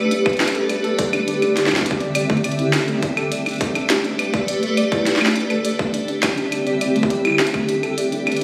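A straight 4/4 IDM groove at 103 BPM comes from a tight, tape-tinged electronic kick and a glitchy kit of claves, clicky hats and a tiny snare touched with delay, with the kick dropping out at 7.7 s for a brief break. Over it, a blurred, evolving granular cloud pad holds sustained A9sus4 and D9sus4 chords with slow attacks, built-in reverb and a vintage 12-bit sampler grit. A soft, round, dark pluck plays arpeggios through chorus and digital delay, giving this melancholic, eerie fragment from a longer piece a phone-in-the-room feel wrapped in a moderate plate reverb.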